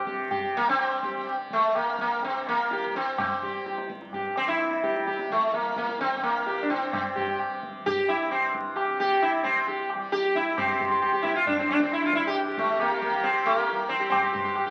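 In a straight 4/4 that speeds up from about 124 to 138 BPM, this longing, meditative Hindustani classical piece sets a round, buzzing, plectrum-plucked sitar with shimmering sympathetic strings up front over a bright, shimmering tanpura drone in the background and high-tuned, ringing tabla, shifting into a new section at 10.6 seconds, all heard through a large, wet studio reverb and the crackle of a very old 78 rpm record.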